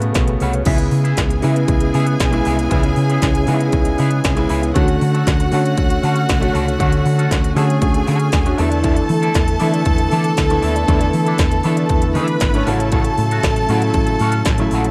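Sultry and danceable, this disco excerpt at 118 BPM rides on an up-front industrial drum kit with a heavy kick, clanging snare and crisp hats, a dark, punchy hollow-body fingered bass, a clear grand piano, a slightly broken-up electric guitar through wah, and a mellow tonewheel organ with chorus vibrato and slow rotary speaker sitting in the background, while an intense bowed chamber string section joins at 0.6 seconds over chords moving from C#m7 through Dmaj7 and E7sus4 to A6 in a digital ambience.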